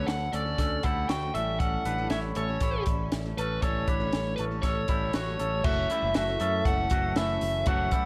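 An echo-heavy mix in a light, small-room reverb frames this short, wistful and restless slice of jangly indie pop, cut from a longer piece. An overdriven, up-front lead guitar carries the biting melody over a boxy parlour acoustic guitar with fresh strings, twangy envelope-filtered electric guitar arpeggios, and a direct, bright picked electric bass, with all three guitars treated with analog delay. A compact cocktail drum kit with a punchy kick, high-tuned snare and dark cymbals drives it along, and at 5.9 seconds a very quiet, hollow, flute-like pad slips in with slow-attack sustained chords as the harmony moves from Dmaj7 and A7 to F#m7.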